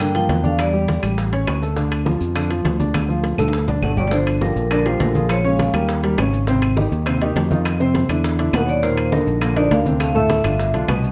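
Afro-Cuban jazz excerpt at a fiery, sultry 204 BPM in 4/4, moving from D minor into G minor at 4.1 s after a drum fill starting at 2.9 s. A bright, ringing vibraphone with medium hard mallets and a slow motor vibrato carries the melody in short phrases, joined by a breathy, whispered trombone second line that sits distant and intimate in the background. Beneath them, a natural-sounding baby grand piano and a round, punchy, dark fingered electric bass stay up front throughout. Tight high-tuned bongos, damped low-tuned congas, metal-shell timbales, woody claves and grainy, close maracas fill out the percussion, all set in a moderate large-studio reverb.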